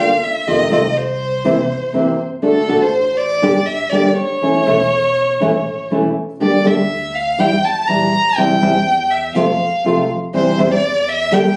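A rubato tango in 4/4 at 122 BPM, this passionate, melancholic passage features a bowed violin up front, playing a solo from 0.0 to 11.6 seconds with vibrato, portamento and a soft attack, moving through chords such as F7, Gm, Edim and C/E. A full-bodied, thumb-plucked nylon-string guitar with audible finger squeak provides the accompaniment, while a woody, dark pizzicato upright bass sits in the background. The sound is wet with club reverb, captured on a phone in the room, and the piece is cut from a longer performance.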